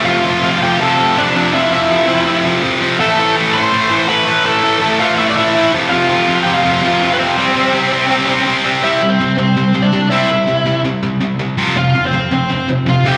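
An up-front, double-tracked distorted electric guitar drives this rowdy punk excerpt at 164 BPM in C major, picking a bright, overdriven riff with slapback echo over chords that move from F and A minor to F5 and C5. A smooth, picked lead guitar, also bright and overdriven and laced with digital delay, carries the melody from 0.1 s, and the music moves into a new section at 8.8 s. The energetic performance sounds like a live gig heard through the venue's PA, set in the reverb of a recital hall.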